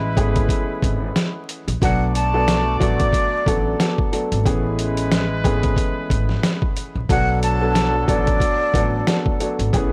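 A distant, roomy horn section opens this gritty, moody boom-bap hip-hop clip, cut from a longer piece, playing filtered stabs with tape echo over a woody, pizzicato upright bass on gut strings. At 0.2 seconds a dark, mellow upright piano joins with short-sustained, filtered accompaniment, along with a compressed, pitched-down sampler-style drum kit that sits up front: a thumpy kick, a medium-tuned snare and hi-hat, roughened by overdrive. The groove moves at 91 BPM in 4/4 with a 57% swing on the sixteenths, in B dorian, trading between Amaj9 and Bm7. From 1.8 to 9.2 seconds a breathy metal jazz flute carries the melody, expressive and soft in attack with vibrato and lifted highs, filtered and treated with tape echo. The sound is dry and gritty, like a hardware recording, with vinyl crackle over the top.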